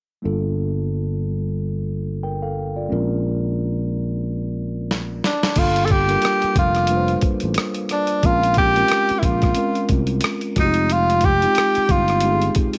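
A soft-attack tenor saxophone with jazz-style vibrato carries the solo melody in this introspective, sultry neo-soul R&B excerpt, entering up front at 5.3 seconds. Before it, a mellow, clean tine electric piano heard through its built-in speakers and a bright, growly fingered bass outline Gm9 and Bbm9 chords. A fill at 4.9 seconds brings in a gritty, pitched-down boom bap kit with a thumpy kick and tape-warm compression, and light reverb surrounds the swung groove as it moves to Fm9 near the close.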